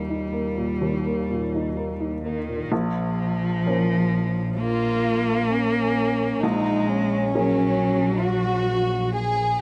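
Neoclassical piano and strings in a rubato 4/4, this excerpt feels longing and fragile. A felt-muted upright piano carries the accompaniment from the opening, its mellow, thin-felt tone given short sustain and a slapback echo. A single bowed double bass holds the low end with a smooth, even sound. A rich, focused cello plays the second line up front, shaped by vibrato and a silky top. At 4.6 s a chamber violin section takes the melody, bowed sul tasto with a soft attack and light vibrato, sitting close and forward. The harmony moves from Eb to Bbmadd9 at 2.7 s and Gbadd9/Bb at 6.4 s, and the recording is dry, captured outdoors with little reverb.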